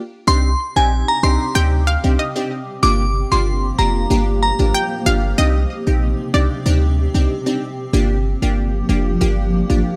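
Bouncy and hypnotic, this dancehall excerpt in C minor moves at 94 BPM with a deep, boomy 808-style bass up front, crisp detuned wavetable chord stabs with a moving notch, a glassy FM synth bell melody with chorus and tape echo that drops out at 4.5 seconds, a round sawtooth analog pluck second line also treated with chorus and tape echo, and a cloudy, wave-folded granular pad bathed in its own reverb, all captured in a dry, gritty hardware recording over alternating Cmadd9 and Gm7 chords.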